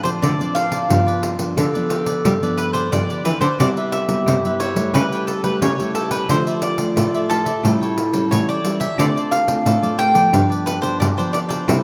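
A straight 4/4 samba and choro groove at 89 BPM, driven by a jingly pandeiro played with hard hands, carries this playful, sunny fragment, where an up-front, round, double-strung mandolin picks the melody over a dark, distant clarinet second line, a crisp cavaquinho in the background, a full-bodied fingerpicked nylon-string guitar and a biting, nasal bowed cello bass with light vibrato entering at 0.2 s, the whole set in moderate plate reverb with a rough home-demo feel.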